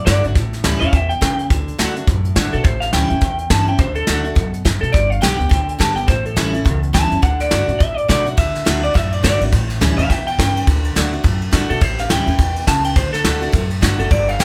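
Rollicking and retro, this short rockabilly cut swings along at a brisk clip in 4/4, taken from a longer piece. Up front, an electric guitar through a small old amp carries the melody with a twangy, slightly broken-up, lo-fi bite, while a picked steel-string dreadnought acoustic supplies a full-bodied, bright picked bed beneath it. An upright bass with gut strings adds a woody, thumpy pizzicato bottom end, and a soft brush drum kit, also placed up front, works hi-hat, ride, a medium-tuned snare and a punchy kick with an airy, polished sheen. The harmony circles between D, G and A7, and the opening phrase comes around again at 8.4 s. Light reverb gives the sense of a band playing live together in one studio room.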